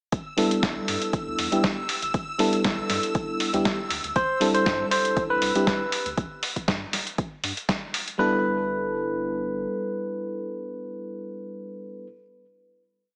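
A barky tine electric piano riff through a combo amp, with digital delay, rides over mellow FM electric piano stabs, a shimmering string-machine high note, an overdriven four-on-the-floor kick, gritty sampler-style hats and snare, and a round analog bass pumping beneath in this relaxed, sunny 119 BPM deep house piece in G major, whose groove gives way at 8.2 seconds to a final G69 chord.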